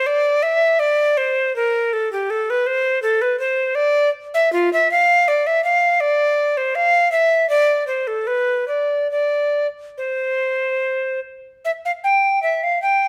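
Rubato and flowing in 3/4, drifting between 68 and 83 BPM, this baroque-style classical fantasia in C major is played by a single alto recorder, cut from a longer piece. The radiant, airy wooden tone sits up front, ranging from F4 to G5 with vibrato, lifted highs, a crisp attack and a touch of chiff. A moderate stone-room reverb lingers around the line, and a new section begins at 11.7 seconds before the recording ends at 13.1 seconds.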